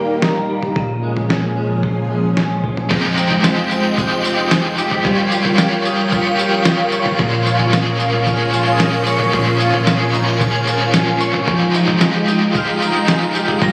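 Lush, vintage string machine chords with ensemble chorus and twangy clean electric guitar arpeggios through chorus and delay open this hazy, ethereal dream pop excerpt in F minor at 112 BPM, joined almost at once by a muffled, pitched-down lo-fi sampler-style drum kit with a thumpy kick, tambourine and toms, before an up-front overdriven electric guitar with tremolo and analog chorus and a very quiet, round sub bass arrive at 2.9 seconds and a shimmering FM bell with tremolo and delay glints in the background from 3.4 seconds, all captured on a phone in the room with moderate studio reverb as the chords move from Eb and Bbm7 to Fm9, Gm7b5 and back.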